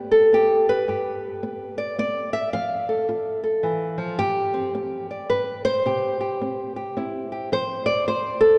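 Folk fingerstyle piece for solo nylon-string guitar, peaceful and hopeful at 108 BPM in a swung 3/4, its dark, small, up-front fingerpicked tone ranging from G2 to F5 and ringing into a long church reverb as the chords move from G through F, Gsus4 and C in this brief 8.6-second cut from a longer piece.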